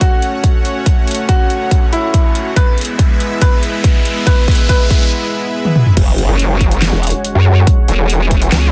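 A bright grand piano melody with dub echo opens over a lush, detuned supersaw pad with sidechain pumping, while a punchy overdriven electronic kick and a dubstep kit of deep snare, metallic hats, handclaps, toms and crash build the tension in this chaotic, aggressive half-time heavy wobble dubstep excerpt. A background riser climbs through the build-up and drum fills, and the piano stops at 4.9 seconds before a brief break. At 6.0 seconds the drop hits with an impact and a pulse-wave formant-sweep bass, joined at 6.3 seconds by a nasal, resonant vowel-sweep bass, both wobbling, chorused, overdriven and up front, all squeezed into a dense, heavily limited, dry mix.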